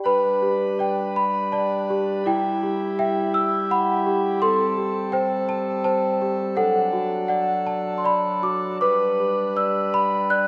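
A bell-like, sweet celesta carries the melody up front, its hard felt hammers giving each note a bright edge as it drifts through this sleepy, tender children's lullaby in G major, played at 82 BPM in a gently rubato 3/4. Beneath it, a pipe organ's nasal cornet solo stop, with baroque voicing and a touch of chiff, holds sustained chords moving from G through Emadd9, Am7 and D before settling back on G at 8.8 seconds. The whole short clip, cut from a longer piece, sits in a lush church reverb that lets every tone linger.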